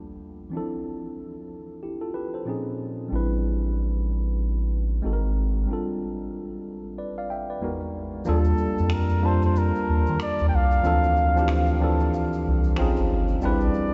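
R&B with a neo-soul lean, this late-night, introspective passage moves at 93 BPM in 4/4 with a loose 16th-note swing, cut from a longer piece. A worn, slightly out-of-tune tine electric piano opens alone, clean and up front through a combo amp, laying down lush extended chords that drift from Ebmaj9#11 through Dm9 and Bbm11. A round analog bass enters at 3.1 seconds, deep and dark with a fast attack and sustained, sine-like tone, sitting close in the mix. After a break from 5.7 to 8.3 seconds, a flugelhorn takes the melody as soloist in a pop style, its warm tone shaped by light vibrato and scooped notes, while a faint egg shaker, finger snaps and a group handclap from a small room add quiet percussion. The electric piano slips in a fill near the close, and a cavernous cathedral reverb with a long 6.4-second tail gives the recording the soft, dim sheen of a church or concert hall.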